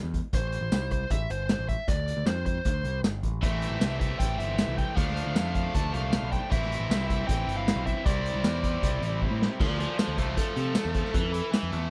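Cool and moody, this indie rock excerpt drives along at 155 BPM in D minor, with a growling, overdriven bass and a punchy vintage drum kit (dark cymbals, tambourine and a pumping small-room sound) sitting up front and dry. A dark, smooth overdriven lead guitar with slapback echo carries the melody almost from the start, joined at 3.4 seconds by a biting, bright double-tracked rhythm guitar riff over chords moving between Am7, Dm and Cadd9. A drum fill at 9.2 seconds launches a short lead guitar solo at 9.6 seconds over Dm7 and Fmaj7.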